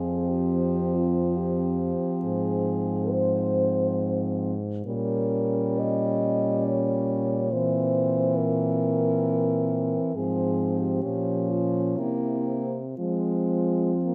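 Classical horn quartet in F minor, a melancholic, yearning lyrical passage in 3/4 at a rubato 57-71 BPM, where a mellow, distant French horn carries the melody over a dark, soft-attacked second horn, a warm, up-front horn accompaniment and a dark horn bass with light vibrato, the harmony moving from F5 through Fm/Ab and C7 to close on Fm at 13.0 seconds, all set in a wet stone room reverb.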